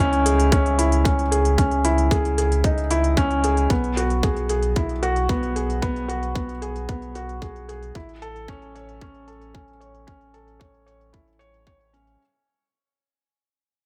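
A felt-muted upright piano, soft and mellow with audible action noise and a short sustain, plays an up-front riff through digital delay in this intimate, melancholic piano and strings electronica excerpt at 113 BPM in 4/4, over a deep, round sine sub bass with sidechain pumping, smooth layered electronic hi-hats behind a low-pass filter, and a tight, tape-warm electronic kick drum that enters at 0.5 s, set in light reverb as the chords move from C#madd9 to Eadd9/B to A and the music fades out across its 12.2 seconds.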